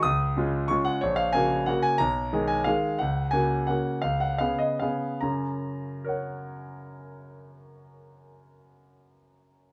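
A lilting waltz in 3/4 moves with free rubato, its tempo ranging between 141 and 193 BPM and easing back between 2.5 and 5.2 seconds. This sparkling, playful classical miniature in F# major is cut from a longer piece and lasts under ten seconds, given entirely to a solo concert grand piano. The piano sounds clear and polished, sitting up front with a deep bass and short sustain as it spans from A#1 up to D#6. The opening passage moves from C# through F#/A#, G#m/B and F#/C# to a C#7 that settles on F# as a new passage begins at 5.2 seconds. Light reverb adds a touch of space around the instrument.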